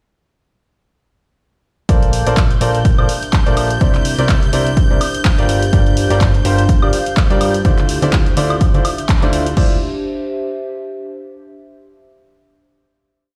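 This energetic, soulful piano house piece in D minor at 125 BPM opens at 1.9 s with a clear concert grand riff of dotted-rhythm chords carrying dub echo, a fat, detuned analog bass locked to the chord rhythm, a punchy four-on-the-floor electronic kick, and an analog drum machine playing closed and open hats, claps, woodblock and crash. A warbling, nostalgic tape-like pad sits underneath, joined shortly after by a silky string pad holding a high note in the background. Sidechain pumping drives the pads, piano and bass over swung 16ths and chords moving from Bbmaj9 through C9 and Gm7 to Dm9, with a band accent at 9.1 s. The dark, lo-fi pad then rings on past the other parts into a final D7sus2 until 11.4 s, the mix carrying light stone-room reverb as if heard on a big sound system in a bare room.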